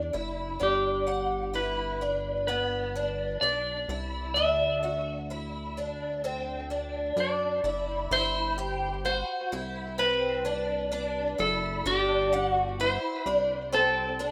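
A slow, straight 4/4 pulse at 64 BPM carries this dreamy, ethereal dream pop fragment, tuned slightly low with A4 at 436 Hz and cut from a longer piece. A picked twelve-string acoustic guitar plays arpeggios up front from the start, its fresh strings sounding bright, boxy and shimmering with octave doubling, bathed in ensemble chorus, plate reverb and tape echo. Beneath it, a chorused synth bass sits low in the mix with a retro, glossy pulse-wave tone, a fast filter pluck and mellow sustain. At 0.6 seconds a clean lap steel guitar enters with the melody, played with slide and fingerpicks, up front and sent through plate reverb and tape echo. The harmony moves from G to Dsus2 at 4.4 seconds, then settles on C over G as a new section begins at 8.1 seconds. The wet room ambience and rough home-demo mix give the recording a loose, intimate haze.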